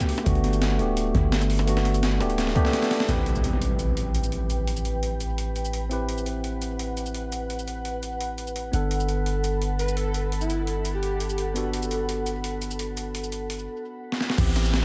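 A gritty, tape-warm breakbeat kit with crash, hi-hat, shaker and snare, soaked in analog delay, opens this dreamy, soulful liquid drum and bass excerpt at 170 BPM, joined by a thumpy electronic kick, a clean tine electric piano with dub echo, and, from 0.3 seconds, a deep, mellow 808-style sine bass sitting up front under a Gmaj9 chord. After a drum fill and a band accent, an electronic impact lands at 3.1 seconds as the harmony moves to Am9, and a glassy, ethereal FM pad with ensemble chorus, sidechain pumping and a filter sweep fills in behind the piano. Once the chords return to Gmaj9, an airy, softly detuned lead with chorus, vibrato and dub echo drifts through in the background around 9.8 seconds, and a downlifter closes the excerpt in an echo-heavy mix with light reverb.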